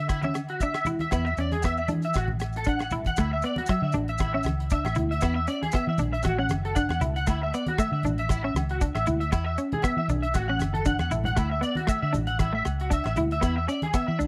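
A lightly swung 4/4 groove with a carefree, danceable highlife lilt is carried by a damped 70s drum kit with a tight kick, hi-hat and rim click, a round, foam-muted fingered electric bass up front, close, grainy maracas, and low-tuned congas and ringing agogo bells in the background. Up front, a twangy electric guitar at the edge of break-up plays arpeggios through ensemble chorus and tape echo, while a bright, compressed clean electric guitar with analog chorus picks out the accompaniment over the chords. The dry, close 1970s-style studio sound gives the short section a polished feel, with a brief drum fill at 10.7 seconds.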